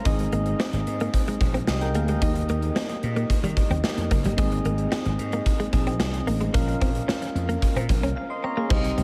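1980s-style pop with an uplifting, romantic mood, this short cut from a longer piece puts mellow, round electric-piano-like synth keys with chorus and tremolo up front, over a punchy slap bass and a gated 80s drum kit with bright cymbals in a stone room. A clean, direct-recorded electric guitar plays a compressed riff in the background through analog chorus and diffuse ambient delay, as the chords move from Ab to Eb, back to Ab and on to Bbm. The keys add a fill at 7.9 s, a break follows at 8.2 s, and an ethereal, airy pad enters barely audible at 9.0 s, closing a dreamy mix soaked in huge reverb.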